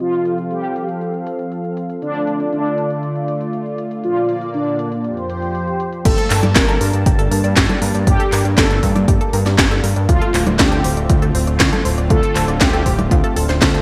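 A mellow, brassy synth lead carries a dark, vibrato-tinged melody over a smooth, detuned analog pad under a filter sweep, while a layered house kit of congas, handclaps, crisp hats, crash and a cracking snare sits up front in gated and studio reverb. At 6.1 seconds this bittersweet, danceable Italo disco groove in G minor at 119 BPM gains weight: a fat, saturated sawtooth bass, a punchy tape-warm electronic kick and a bright, round analog pluck arpeggio tucked in the background all join, and the harmony moves from Gmadd9 to Dm7. The bright 1980s-style digital production is bathed in a lush hall reverb, with chorus and digital delay shimmering on the lead and pluck, and the pad carrying a grainy 12-bit sampler grit.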